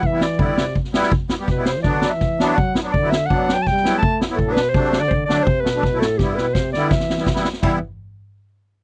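A straight 4/4 pulse at 166 BPM drives this soulful, festive klezmer excerpt in E minor, moving from Em through Bm and D back to Em. A soft-attacked, classically styled clarinet carries the melody while a mellow trombone adds a jazz-inflected second line with light vibrato and scooped notes, over a reedy, shimmering musette accordion and an up-front street-band drum kit with a boomy kick and dark cymbals that plays a fill from 6.2 to 7.6 seconds. The sound is a dry, close 1970s-style studio recording with light reverb.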